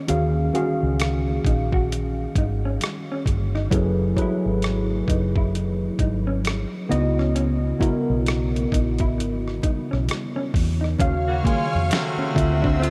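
R&B neo-soul with a late-night, soulful mood, where a gritty, pitched-down boom bap sampler kit and a round, foam-muted electric bass sit up front beside a worn, slightly out-of-tune tine electric piano with analog chorus, while a dark, fingered electric guitar carries a second line and very quiet congas ring in the distance; then shimmering string-machine violins join at 11.0 seconds and a tight, distant saxophone section adds stabs with tape echo at 11.3 seconds, all bathed in a huge, dreamy ambient reverb.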